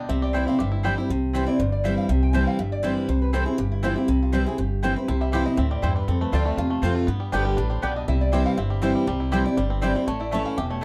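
Bluegrass in C major at a brisk 240 BPM in straight 4/4, this driving, joyful excerpt is cut from a longer piece. A lap resonator guitar carries the melody throughout, its slide tone metallic and nasal, while a twangy, percussive banjo shares the lead, dropping out after 1.1 seconds and returning at 5.1 seconds. Up front, a picked steel-string acoustic guitar supplies bright, full-bodied accompaniment with audible finger squeak, and a woody, growly upright bass thumps out the low end from 0.1 seconds. A double-strung mandolin adds picked stabs from 0.3 seconds, and the harmony moves from C through F and G back to C; a new section begins near the close, and the harmony turns to A shortly after. Light reverb sits over a dark production.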